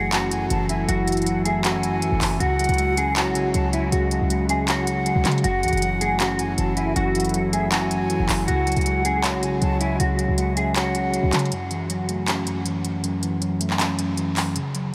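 A dreamy, reverb-soaked mix with a huge ambient space frames this menacing, melancholic half-time trap piece in F# minor at 158 BPM, cut from a longer work, where a clean, fingered electric guitar carries the melody through ensemble chorus and delay while a breathy, close-miked flute traces a second line above it in the background. An up-front tine electric piano, filtered and mellow, plays the F#m7 to C#sus4 changes over a deep, detuned sawtooth pad with slow attack and chorus, a punchy, tight 808-style bass, and crisp, tape-warm trap drums with handclaps and hi-hats. At 11.5 seconds the other parts drop away for a break, leaving the electric piano under a filter sweep with the drums until 14.8 seconds.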